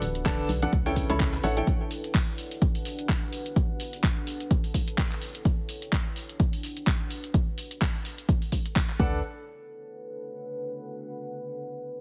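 Piano house with a joyful, feel-good swing, cut from a longer piece, where a clear, up-front baby grand piano riff with digital delay, a hollow, organ-like FM bass with tube saturation and very quiet, ringing tambourine and congas all drop away by 1.7 seconds, while a punchy, tape-warm electronic kick and a garage kit of cabasa, handclaps and bright hi-hats drive on until 9.0 seconds, when piano and bass briefly return before a deep, moody, detuned ambient pad with chorus and sidechain pumping carries on alone from 9.2 seconds, the whole mix squeezed into a heavily compressed, radio-like sound.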